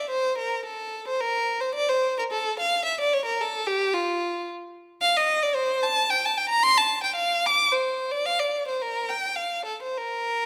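A lone bowed violin opens the recording, its tone clear and focused, with vibrato and a close, up-front presence. This is a classical, baroque-style suite movement for unaccompanied violin in 3/4 at about 110 BPM, played with a rubato feel that gives the line a serene, flowing character. The melody sits in F major and moves to Bb major at 5.0 s, ranging from F4 up to D6. A moderate recital hall reverb surrounds the single player, adding a sense of space while the instrument stays intimate. Tuned to A4 = 438 Hz, this 10.5-second excerpt is cut from a longer piece.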